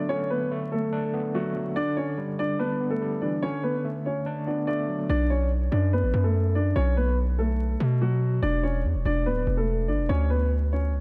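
Trap-leaning hip hop at 144 BPM in a half-time feel and B minor, this brooding, hard-hitting excerpt sets a dark, mellow grand piano melody, with tape echo and a low-pass filter, over a gritty, barky overdriven tine electric piano with fast tremolo through a combo amp until 5.1 seconds, when a punchy, heavy 808-style bass enters in the low end through chords moving from Bm7 and Em7 to E7(no3) and Bmadd9, all within a dark, warm production of light studio reverb and vinyl crackle.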